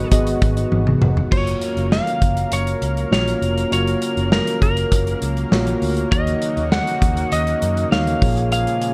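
A small room ambience surrounds this urgent, dramatic 1980s-style pop passage at 100 BPM, cut from a longer piece, with an up-front acoustic drum kit bringing gated reverb, a tight kick, a medium-tuned snare and a fill from 0.7 to 1.3 s. A dark, slightly broken-up lead guitar with digital delay carries the melody over a mellow tine electric piano, a lush, detuned unison pad with chorus holding sustained chords, and a round, foam-muted fingered bass with tube saturation. The harmony moves from G#m7 to F#maj7 at 1.3 s, then through D#m7 and A#m7.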